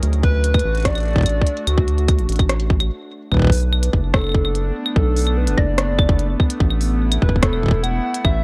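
IDM with a glitchy, intricate mood, this short cut from a longer piece wraps everything in worn, warbling cassette tape with drifting pitch and a dry, close feel, moving from D to Bm7 and Asus2 after a brief break at 2.9 seconds. A detuned, mellow pad holds sustained chords under sidechain pumping, while a round, dark analog bass sits up front with tube saturation and a tight, overdriven electronic kick punches beside it. Overdriven claves, clicky hi-hat and rim clicks scatter around a nostalgic square-and-sawtooth lead that sings with vibrato, chorus and delay.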